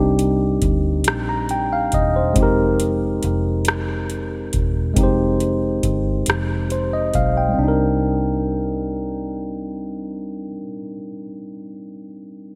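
A slow R&B groove in 6/8 moves at 46 beats per minute, counted in dotted quarters with a straight feel, cut from a longer piece in C minor with a yearning, sultry mood. A booming analog drum machine sits up front with a deep kick, metallic hats and rim clicks, its tape-warm tone playing from 0.2 to 7.3 seconds. Beneath it, a vintage muted fingered electric bass gives a dark, round, amped, foam-muted low end until 10.6 seconds. A clean, direct tine electric piano carries the accompaniment up front across the whole 12.6 seconds, voicing Cm9 and Fm11 before returning to Cm9 as a second section begins at 7.6 seconds. Light reverb and bright 1980s-style digital production frame the sound.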